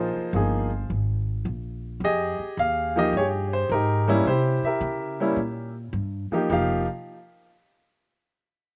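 Swinging and cool, this jazz piano trio excerpt moves at 107 BPM in 4/4 with a firm swing on the eighth notes. A baby grand piano carries the melody with a natural, up-front tone touched by slapback echo, while a woody, thumpy pizzicato upright bass on steel strings holds the low end, both playing from the start until 6.9 seconds. The dry, close sound passes through Bbsus2, Fm9 and C7b9 before the harmony drops away at 6.5 seconds.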